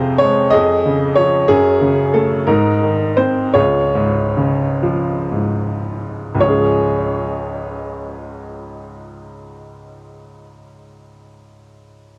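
Set in 6/8 with a free rubato feel, this tender, peaceful classical fragment for solo upright piano eases into a slower pace between 1.5 and 6.4 seconds as its opening chords settle home, before a second section carries on to 12.2 seconds. The piano sits up front with a woody, vintage character and a touch of tape echo. The whole recording has a wet studio ambience and the worn, warbling pitch drift and lossy grit of old cassette tape, and it is cut from a longer piece.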